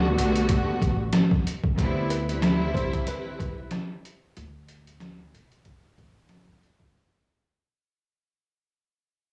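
A swung 93 BPM boom-bap beat from an overdriven, muffled, pitched-down sampler-style drum kit with a thumpy kick and 12-bit grit drives this nostalgic, confident hip hop excerpt. A woody pizzicato upright bass and a bowed, tape-coloured string section playing sul tasto with vibrato outline Gmaj7 and Cmaj7, while a dark, slightly detuned upright piano with audible action noise adds a brief background melody from 2.1 seconds. The strings stop at 3.9 seconds before a break on Asus24 from 4.4 seconds, the gritty, dry recording carrying vinyl crackle and small-room reverb as the track fades out.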